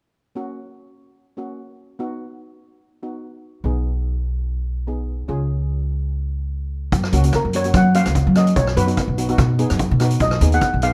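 A rough home demo in a small room opens this festive, carefree calypso excerpt in F# major at 146 BPM, where an airy, shimmering steel pan supplies the accompaniment while a woody, growly upright bass sits up front from 3.6 seconds. At 6.9 seconds a street-band drum kit joins with a boomy kick, hi-hat and rim click under a rolled-off top, and half a second later a second steel pan takes the melody, close-miked, full and metallic with a slapback echo. The lightly swung 16ths keep the groove loose and sunny.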